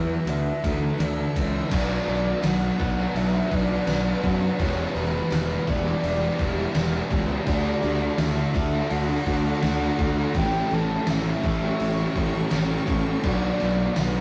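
A straight 83 BPM 4/4 pulse from a gritty, pitched-down trip hop sampler-style kit with a thumpy kick, entering at 0.3 seconds, anchors this blissful, dreamy shoegaze and dream pop rock excerpt, where an up-front fuzz fingered bass and a crunchy overdriven guitar riff sit alongside a soft, round octave-layered synth lead with chorus and vibrato, a cloudy, evolving granular pad in the background, a very quiet dark fuzz guitar, a boxy, shimmering twelve-string acoustic picking arpeggios, a hollow-bodied overdriven semi-hollow guitar joining at 1.7 seconds, and a jingly, distant tambourine from 2.4 seconds, all moving from Dsus2 through Bm, Em7, D and A7 in a rough, saturated rehearsal-room sound with stone room reverb.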